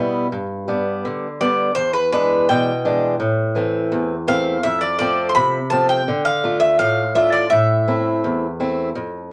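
A straight 2/4 pulse at 84 BPM drives this brief, moody passage of Greek folk music, cut from a longer piece for a bouzouki band and tuned slightly sharp of standard pitch. A fingerpicked swing-style acoustic guitar opens the recording and carries the accompaniment throughout, its dark, boxy tone sitting up front in the low and middle register. At 1.4 s the Greek bouzouki enters with the melody, high and forward, its picked double strings giving a metallic ring with some octave-doubled strings adding shimmer. The harmony moves from G through E7 to A minor, then F, D minor and back to A minor, lending the passage a cool, minor-leaning cast. The bouzouki drops out at 8.2 s while the guitar continues to the end, and a moderate studio ambience keeps both instruments close and natural.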